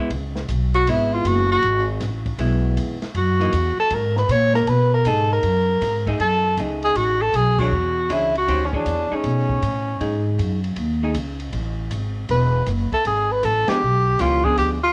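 Recorded at home on cassette with small-room ambience and light reverb, this playful stretch of small-group swing and bop moves at 158 BPM in B mixolydian with swung eighths. A breathy, mellow tenor saxophone with light vibrato and scooped notes carries the melody up front, opening with a solo. Beneath it, a woody pizzicato upright bass anchors the low end, and an open drum kit with dark cymbals, a boomy kick and a rolled-off top sits lower in the mix, while a clean, picked hollow-body electric guitar accompanies through chords from C#m7 to a closing Fdim7, dropping out at 11.1 seconds and returning just after a band accent at 13.6 seconds.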